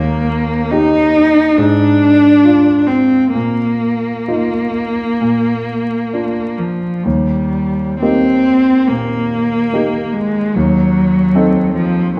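A bowed cello with a rich, focused vibrato and a clear concert grand piano begin together at 0.0 s in this lyrical, tender excerpt from a slow romantic classical movement in Eb major, moving in 4/4 at 60-75 BPM with a supple rubato. The solo cello sings the second line up front yet slightly distant, while the smooth, vintage-toned piano supplies deep-bass accompaniment with short sustain, passing through Fm/Ab and a Bbsus4 resolving to Bb before returning to Eb and colouring it with Ebdim7 at 10.5 s. A wet recital-hall reverb and a dark production touched with vinyl crackle frame the whole passage.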